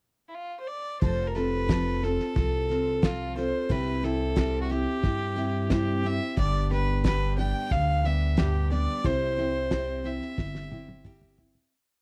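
A clear, lightly vibrato fiddle opens alone with a pickup before a thuddy, cloth-damped drum kit with a fat snare and train beat, a woody pizzicato upright bass playing a two-beat root-and-fifth line, and a bright, finger-squeaky picked acoustic guitar join at 1.0 seconds for a sunny, down-home honky-tonk verse at 90 BPM in F lydian, moving from F through C and G in a dry, close 1970s-style studio sound that fades out from 9.0 seconds under a closing drum fill.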